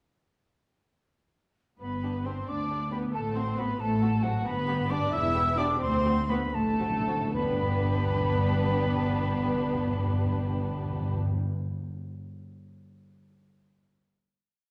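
Set in a reverberant recital hall, this short, lively classical-period orchestral piece in G major moves in a rubato 6/8 at 72-92 BPM, with veiled, muted violins carrying the melody over muted violas doubling the tune at the octave, a second violin section adding after-beat and sustained chords, and muted cellos and double basses sounding the bass in the background, while an airy silver flute plays a second line above; the music slows from 3.8 seconds, timpani enter with a fill at 5.8 seconds, and the piece settles onto a final G chord at 7.3 seconds.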